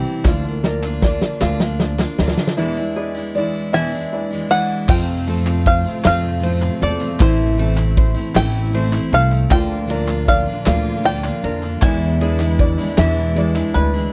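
A straight 6/8 lilt drives this anthemic, uplifting indie folk passage, opening on a build-up where a natural country drum kit with a fat snare and punchy kick plays a fill, while group handclaps, a grainy, very quiet tube shaker, a growly pizzicato upright bass, a jumbo steel-string acoustic guitar with audible finger squeak, and a lightly fingerpicked tenor ukulele playing arpeggios fill out the groove. An intimate grand piano with audible action noise sits in the background and takes a fill from 3.7 seconds, just as a twangy bluegrass banjo played with fingerpicks enters up front with the melody. At 4.9 seconds a dark, lush bowed string section adds very quiet sustained chords beneath the dry, close 1970s-style studio sound.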